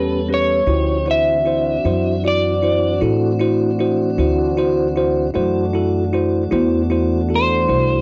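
An electric slide guitar sits up front with the melody, its slightly broken-up, fingerpicked tone carrying a swaggering, soulful slow blues in 12/8 at 51 BPM, with a straight feel and tuning a touch under standard at A4 = 439 Hz. Beside it, a bell-like tine electric piano plays bright, clean accompaniment, run through a phaser and also placed up front. A mellow tonewheel organ holds round, dark sustained chords through a slow rotary speaker, with vibrato and a hint of key click. Underneath, a woody pizzicato upright bass on steel strings anchors the low end, while the guitar, piano and organ all share a cassette-tape colouring. All four parts play throughout this 8-second cut from a longer piece, moving from A9 to D9 at 0.7 seconds, within a homespun cassette recording with light reverb.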